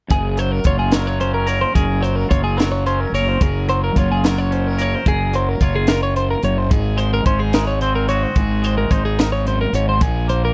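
A straight 6/8 pulse at 73 BPM drives this playful, intricate math rock and midwest emo excerpt in Gb lydian, where a crisp, punchy fusion kit with a high-tuned snare and gritty saturation sits up front beside a round, fuzz-overdriven fingered bass, while a bright, compressed twelve-string electric guitar spins arpeggios and a scooped, twangy electric guitar bathed in spring reverb supplies accompaniment over chords moving from Gbmaj9 to Ab9 at 6.7 seconds and Bb7sus2 at 10.0 seconds, all in a dry, close sound.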